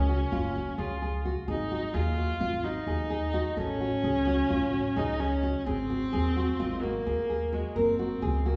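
Set in a straight, uneven 9/8, this short cut from a longer contemporary chamber piece has a hypnotic, restless pull. A nylon-string guitar fingerpicks arpeggios in a fresh, deep classical tone, while a single bowed viola carries a smooth, even second line with rich vibrato. Beneath them, a pizzicato upright bass on gut strings gives a woody, thumpy, dark foundation, sitting up front alongside the viola. All three parts play together for the full 8.6 seconds, moving through harmonies such as Ab5, Gbm/A and Ab7 before settling on Gb. The sound is heard from further back in a small room, wrapped in a wet recital-hall reverb.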